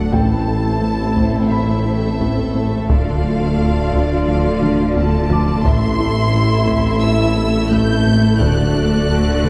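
A straight 4/4 pulse at 87 BPM drives this tense, futuristic hybrid orchestral and electronic film cue in A minor, where lush bowed violin sections carry a smooth vibrato melody over a focused second violin line, expressive portamento violas, a hollow flute-like pad, mellow close French horns, a distant roomy tuba, very quiet cellos and woody double basses, a menacing detuned saw bass with a filter swell, a soft round decaying pluck arpeggio, a fat analog bass riff with a filter sweep, dry heavy-stick taiko with a fill from 4.6 to 5.7 seconds, and a felt-muted upright piano texture through a digital delay that stops at 8.4 seconds, all set back in a wet scoring-stage reverb.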